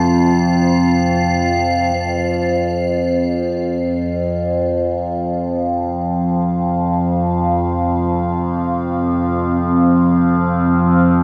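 An up-front, wave-folded drone with resonant, moving overtones and phaser anchors this ominous dark ambient fragment in free time, beneath a deep, detuned analog pad of sustained chords opening on F5 that fades in from 2.0 s to 11.2 s, while an icy, crystalline glass pad glints only through the first 2.0 seconds, the whole piece bathed in a cavernous cathedral reverb.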